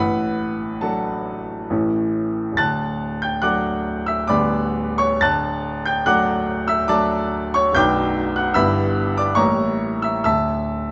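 This romantic classical character piece for solo piano moves in a three-beat metre with uneven, rubato pulse, and its mood is lyrical and hopeful. The grand piano is the only instrument, sitting up front with a clear, open tone and long sustain, played across a broad span from B0 up to A6. Light reverb gives the piano a gentle sense of space. The harmony opens on a D chord over A, passes through A and G over D, and turns briefly toward B minor and E minor over G near 7.7 seconds. A tense A7b9 chord then leads to a bare D5 at 10.3 seconds, closing this short passage cut from a longer piece.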